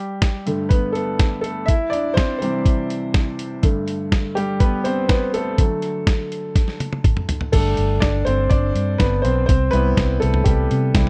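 Piano-driven pop in G major at 123 BPM in a straight 4/4, this short excerpt from a longer piece feels hopeful and uplifting. A clear upright piano opens at 0.0 seconds and carries the piece as its featured voice, woody and intimate, with audible action noise that keeps it natural and up front. A lo-fi sampler-style drum kit joins almost at once, compressed, pitched down and muffled, with a thumpy kick, a medium-tuned snare, hi-hat, crash and toms, and a drum fill at 6.6 seconds. At 7.5 seconds a vintage muted fingered electric bass enters, dark, round and foam-muted with an amped tone, as the music moves into a new section. The harmony moves between Gsus2, C and D, and the dry, close 1970s-style studio sound keeps every part near the listener.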